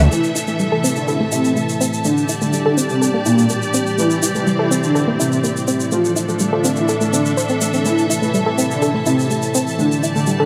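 Melodic techno at 124 BPM in A minor, melancholic and cinematic, where a nasal, dark round pluck arpeggiates with cassette-tape grit and tape echo over a mellow, brassy synth melody with dub echo, a detuned supersaw second line under a low-pass filter, a warbling vintage analog pad, a rich bowed string section, a pulse-width-modulated analog drone from 0.2 seconds and a grainy tube shaker, all set in a lush hall reverb as the chords move from Am through Gm and back to Am before landing on G5 at 9.8 seconds.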